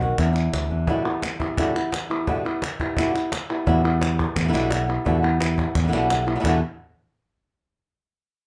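A straight 4/4 pulse from a woody cajon with faint snares and crisp, distant palmas hand claps carries this dramatic, mournful flamenco excerpt, where an up-front, boxy fingerpicked flamenco guitar with audible finger squeak leads the melody over a harmony that settles from Dsus2 onto Em7, while a dark, round fretless electric bass drops out after 0.9 seconds and returns at 3.7 seconds, all set in a moderate studio reverb.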